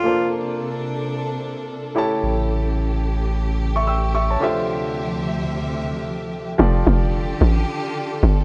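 Opening on a polished, up-front grand piano over a smooth, bowed string ensemble with vibrato and portamento, this soulful, swung amapiano fragment brings in a deep, thick, saturated sub bass from 2.2 to 4.4 seconds, eases into a break, then drops at 6.6 seconds into a hollow, bouncy log drum bass with a quick, decaying attack, all set in a dry, gritty recording with studio reverb.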